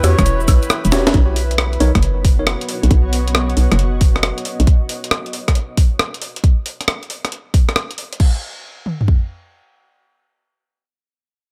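UK garage in a two-step groove at 136 BPM with swung 16ths in B major, this soulful, sunny fragment opens on a drop capped by a drum fill over an Em6 moving to B, with clean tine electric piano stabs through delay lasting to 2.4 seconds, a hollow, bouncy, up-front FM bass and a blurred, evolving granular cloud pad with its own reverb and sidechain pumping both stopping at 4.7 seconds, as a gritty, pitched-up, tape-warm breakbeat kit of snare, hi-hat, rim click, cabasa, woodblock and crash rides over a punchy electronic house kit of kick and toms that carries on to 9.2 seconds in a dry sound.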